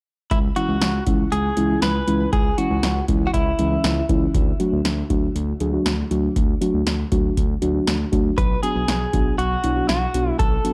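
A straight 4/4 electro analog drum machine pulse at 119 BPM, with a deep kick, punchy snare and metallic hats, drives this cool synth-pop excerpt, where an up-front, smooth, gliding synth bass with vibrato and portamento sits beneath muted, felt-like synth keys dressed in chorus and shimmer reverb, while a clean, picked, direct-recorded electric guitar carries the melody through its own shimmer reverb, dropping out at 4.1 seconds and returning at 8.4 seconds as the chords move from C#m to D to Bm in a dry, gritty digital ambience.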